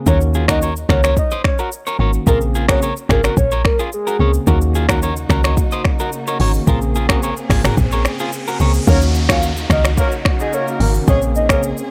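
A straight afrobeats groove in 4/4 rides on an up-front deep house drum kit, where a deep kick and smooth hi-hats sit among finger snaps, rim clicks, shaker and toms. Beneath it, a round, dark log drum bass hits with a fast attack and a decaying tail, while a bell-like, barky tine electric piano comps brightly over chords cycling between Ebm7 and Bbm9. A slightly broken-up, twangy electric guitar plays a compressed riff through the first section, and a soft, octave-layered synth lead carries the mellow melody, its detuned, sub-octave tone colored by chorus, phaser, tape echo and vibrato. Lush bowed strings settle into the background from 4.5 seconds, and riser and downlifter effects enter at 7.4 seconds before the second section opens at 8.9 seconds with a distant, roomy horn section adding a second line. The hypnotic mix is dry and gritty, with little reverb, and the piece is cut from a longer work.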